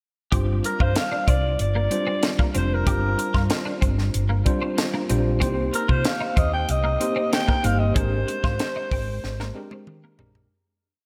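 A crisp sixteenth-note groove from a tight funk drum kit with a high-tuned snare drives this short, polished 1980s jazz-funk pop piece at 94 BPM in 4/4. A woody, round fretless bass plays an agile syncopated line up front, a worn, slightly out-of-tune tine electric piano pushes drop-2 chords through G7sus4, Cm7 and Abmaj9#11, and a clean, compressed twelve-string electric guitar picks a muted single-note riff, while from 0.7 seconds a raspy, growling alto saxophone with vibrato sings motif-based jazz phrases through slapback and tape echo. Nocturnal and bittersweet, it sits in a lush hall with a big arena sound, fading out from 8.0 seconds as the drums play a fill from 9.2 seconds.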